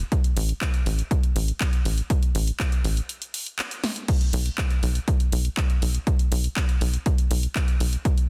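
A steady, straight 4/4 pulse at 121 BPM drives this short progressive house excerpt, cut from a longer piece, with a driving, expansive mood. A punchy, tape-warm electronic kick sits up front and carries studio reverb, joined by a layered house drum kit of punchy snare, warm hi-hats, handclaps and crash cymbal, set lower in the balance under the same reverb. A tight sequencer bass built from sawtooth and square waves plays a filtered pluck with a fast attack and a decaying tail between A1 and B1, pumping through sidechain compression and sitting forward in the mix. A break arrives at 3.1 seconds, with a drum fill at 3.8 seconds leading back in by 4.1 seconds. The whole track sits in a digital ambience under a dense, heavily limited modern master.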